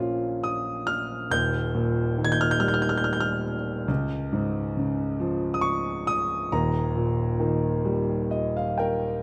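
In a rubato 6/8 at 46 BPM counted in dotted quarters, this tender, peaceful fragment of lyrical classical solo piano places an intimate, boxy grand up front with long sustain and audible action noise, moving through Bbm, Eb, Db and back to Eb across a span from Eb1 to Ab6, with a brief fill at 7.9 s before the passage cuts off at 9.2 s inside a moderate concert hall reverb.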